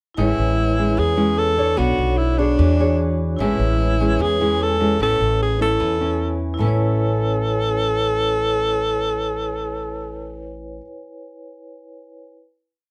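A nylon-string guitar sets a straight bossa nova groove at 149 BPM in A major, its thumb bass and syncopated plucked chords sounding fresh and classical, while a woody, growly pizzicato upright bass plays a two-feel on roots and fifths. Up front, a breathy alto saxophone with vibrato sings short, motif-based song phrases in a jazz style, as a metallic vibraphone adds airy, held rootless chords with a medium motor vibrato. This short, sophisticated and breezy piece is recorded close and dry, settling on a final chord from 6.6 s and leaving the vibraphone ringing until 12.3 s.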